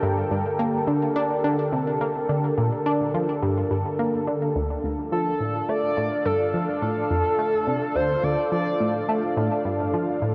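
A tight, nasal sequenced synth riff drives this cosmic, expansive stretch of ambient space music in G minor at 106 BPM, its detuned sawtooth colored by chorus, phaser and delay. A sweeping, resonant pad holds sustained chords from Gmadd9 to Dm at 4.6 seconds, and a shimmering pulse-width lead with vibrato and portamento sings a brief melody between 5.1 and 8.9 seconds. Huge, wet reverb and the warbling pitch drift of worn cassette tape give this short cut from a longer piece a hazy, vintage cast.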